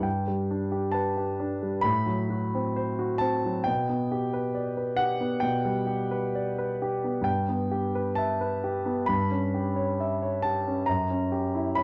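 Flowing in a rubato 4/4, this short passage from a longer romantic nocturne for solo grand piano carries a yearning, mournful mood across its 11.8 seconds. The piano sits up front with a polished, present tone, spanning F#2 to B5 in a light reverb. Its harmony drifts from G through diminished and half-diminished colours before coming to rest on a tense F#7b9.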